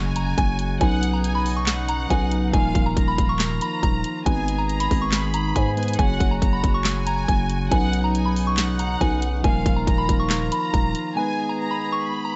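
Triumphant yet dreamy, this half-time trap hip hop excerpt sets a soft, pure FM synth bell melody with chorus and tape echo over a lush, distant bowed violin section carrying an echoed second line, a clean tine electric piano heard through its built-in speakers, and mellow, roomy brass holding sustained chords, while a growling, buzzy 808-style bass and an up-front trap kit of hard-clipped kick, sharp snare, bright hats and handclaps drive the track until the bass drops out at 10.9 seconds and the drums fall silent at 11.2 seconds, with a barely audible electronic impact marking the very start.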